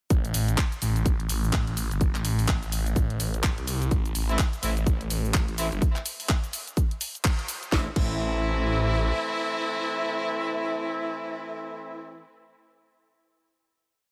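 Set in a light digital ambience, this aggressive, gritty bass house piece drives a swirling, saturated detuned saw bass through chopped, pumping phrases over a punchy four-on-the-floor electronic kick and a house kit of cracking snare, handclaps, hi-hats, shaker and crash, while a brilliant, tight horn section enters at 4.3 seconds with syncopated, octave-doubled chord stabs and echoing delay, ringing on with the bass after the band accent into a final A minor chord at 7.7 seconds.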